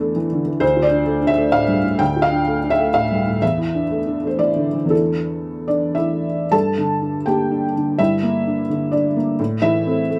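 Wistful and melancholic, this short excerpt of neoclassical minimalist piano drifts in 3/4 with a rubato feel, its tempo moving between 100 and 134 BPM. A felt-muted upright piano plays alone across the whole 10.2 seconds, ranging from D2 up to A5. Its tone is soft, mellow and intimate, with a thin felt coloring, a slightly boxy body and audible action noise that places the listener close to the instrument. The harmony moves from Asus4/E to Dm and back, then shifts at 6.5 seconds to Gm before settling on Am. The piano sits up front in a moderate studio ambience with a short, natural room decay, captured as a live performance.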